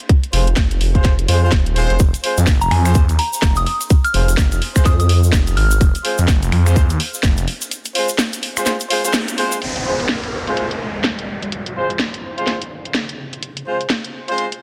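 A swung 126 BPM groove drives this aggressive, bouncy bass house excerpt in F minor, where a tight electronic kick and a garage kit of finger snaps, hats and a cracking snare sit up front. A swirling, thick, saturated, filter-swept detuned saw bass pumps beneath stabs from a clear, loose jazz-style horn section, while a grainy tube shaker and a pure, gentle FM bell add colour before a break at 7.7 seconds and a downlifter at 9.6 seconds, all in a dense, heavily limited modern master.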